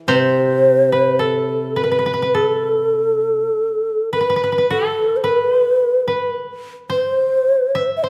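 Japanese traditional chamber music in A minor, meditative and austere, drifts in free rubato at roughly 49-56 BPM as an up-front, airy, hollow shakuhachi with a crisp, chiffy attack and vibrato carries the melody from 0.1 s, while a warm, woody, fingerpicked koto traces a second line in the same register and a low, brighter koto accompaniment sounds only until 3.5 s, all set in a moderate recital-hall reverb across this short excerpt from a longer piece.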